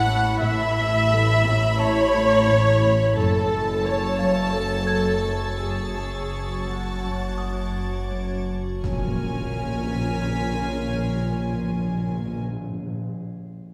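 This cinematic suspense film score moves at 86 BPM in a straight 4/4, its mood uneasy and ominous, and it is cut from a longer piece. Bowed string sections played sul tasto with a soft attack carry the harmony: a floating symphonic violin melody high up, a second violin line beneath it, an intimate chamber viola section with vibrato, a very quiet studio cello riff, and a distant cello section with double basses holding the bass. An icy, crystalline glass pad with chorus sustains chords above a deep, rumbling drone, while a high violin texture floats in the background and a delicate, tinkling music box sounds from 1.8 to 8.8 seconds. The harmony moves from Aadd9 to Gbm, then turns to Bbm7 at 8.8 seconds, where close timpani on calf heads and a huge, bright impact enter together. The whole ensemble sits further back in a reverberant scoring stage, lending the score a spacious, shadowy depth.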